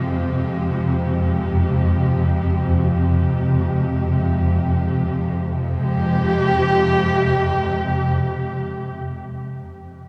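Desolate and ominous, this dark ambient drone in free time and F minor, tuned to A4 = 436 Hz, opens on an Fmadd9 with a swarming, detuned, granular drone of slow attack and long release beneath a woody, bowed chamber cello section holding dark chords with vibrato, while a very quiet bronze singing bowl rings with slow metallic beating until 5.5 s, the parts set in a cavernous cathedral reverb, and in this fragment of a longer piece the cellos hold on until 8.9 s.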